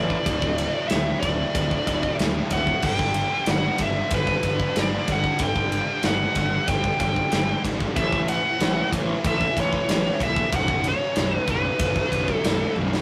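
A straight 4/4 groove at 94 BPM drives this dark, aggressive heavy metal excerpt, tuned slightly sharp to A4 = 445 Hz and moving through D5, G5, A and B5. An up-front, high-gain lead guitar carries the melody between B4 and G5 until 12.7 seconds, while a bright, double-tracked distorted rhythm guitar picks a low riff in the background and a growly, fuzz-laden picked bass digs into the bottom. The acoustic drum kit sits forward with a tight kick, medium-tuned snare, crashes, ride and toms in a big room with a rolled-off top, closing on a fill at 12.8 seconds, all within a rough rehearsal-room recording with light reverb and saturation.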